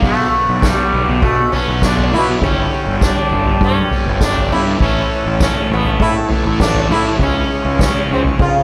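A straight, steady 4/4 pulse from a soft-mallet drum kit anchors this hypnotic, kaleidoscopic slice of psychedelic rock, cut from a longer piece, its boomy kick, medium-tuned snare and toms sitting up front with a natural hall tone. A fuzz-soaked fingered electric bass, overdriven and round, holds down the low end while a thick, double-tracked fuzz guitar picks out a distorted riff colored by a phaser. Over them a buzzing, plectrum-plucked sitar carries the melody up front, its sympathetic strings shimmering through an analog delay. A vintage combo organ with light vibrato holds clean, buzzy chords in the background, and a jingly, band-limited tambourine enters quietly at 0.6 seconds. The harmony moves from Bm through Gsus2 and A to C#add9, all set in an echo-heavy mix with light reverb and small-room ambience.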